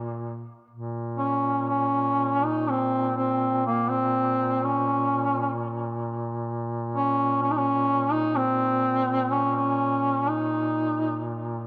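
Caucasian folk fragment with a mournful, longing mood and an uneven, rubato 3/4 feel: a mellow duduk holds a low drone from 0.0 s, and at 1.2 s a warm, up-front duduk with tape echo enters to sing a vibrato-laden melody full of scooped notes, both reeds sounding distant and roomy within a moderate spring reverb.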